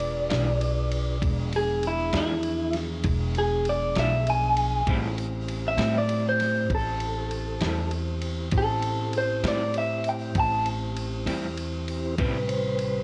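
Smoky and soulful, this slow blues in A minor moves at 66 BPM in a straight 12/8, opening on an E7b9 chord before settling onto Am7 at 4.9 seconds in a short cut from a longer piece. An up-front, slightly broken-up electric guitar through a small old amp carries a clean solo melody until 10.7 seconds, ahead of a break at 11.3 seconds, over a growly, woody pizzicato upright bass and a dusty sampler-style kit with a thumpy kick, fat snare and ride cymbal. A mellow, flute-like tonewheel organ holds sustained chords through a slow rotary speaker while a darker second guitar with tremolo plays accompaniment in the background, the guitars, organ and drums carrying a cassette tape grit in a home recording with light digital reverb.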